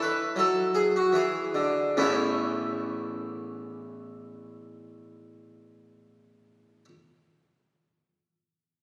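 In a flowing, rubato triple metre that slows down over the first 2.0 seconds, this dance-like, baroque-style suite movement, cut from a longer piece, features a solo Italian-style harpsichord with two sets of strings, its airy, plucked, full tone sitting up front across a range from A1 to C#5, moving from Eadd9 through E7 to settle on A at 2.0 seconds before a new section unfolds, all captured on a phone in a church whose wet reverb rings for 2.8 seconds.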